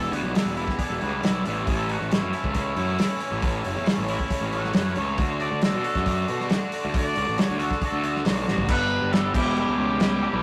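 A rough rehearsal-room recording with light reverb and saturation carries this jangly, wistful indie rock excerpt in straight 4/4. A clear trumpet with light vibrato and scooped notes takes a solo until 8.7 seconds over a biting overdriven guitar riff and a twangy electric guitar riff in the background, while a growly fuzz bass and a cloth-damped, thuddy drum kit with dark cymbals sit up front. A very quiet, breathy pad with chorus enters at 2.3 seconds over chords moving from Em7 through A and D, and a drum fill at 8.5 seconds leads into a brief closing passage on Gadd9 and Em.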